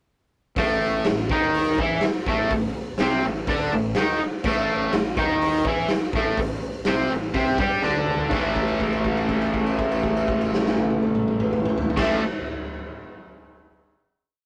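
Garage rock with a swaggering, rowdy mood, this short complete piece moves at 123 BPM in a straight 4/4, built around an A5 chord. A raw, overdriven electric guitar sits up front playing a bright, double-tracked octave riff from 0.6 s, spanning A2 to G4. Beneath it, a fuzzed, round electric bass stays in the background with a quarter-note figure that doubles the guitar riff. The acoustic drum kit drives a big rock groove with a punchy kick, a medium-tuned snare, hi-hat, crash and toms, its sound gritty and saturated with a rolled-off top. A drum fill at 7.8 s leads into a final held chord at 8.3 s that rings until about 12 s. The whole thing has the rough feel of a rehearsal room, with tube saturation and a short, moderate booth ambience.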